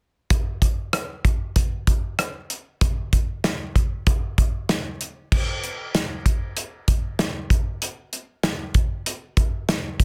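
Hopeful and nostalgic, this short rock clip at 96 BPM in a straight 4/4 features a natural country drum kit playing on its own from 0.3 to 10.0 seconds, with kick drum, snare, hi-hat, rim clicks and crash cymbal. The acoustic kit sits up front in a small room, pairing a punchy kick with a medium-tuned snare that carries a touch of soft clipping. Light reverb surrounds a dense, heavily limited modern master, and the groove moves into a new section at 5.3 seconds.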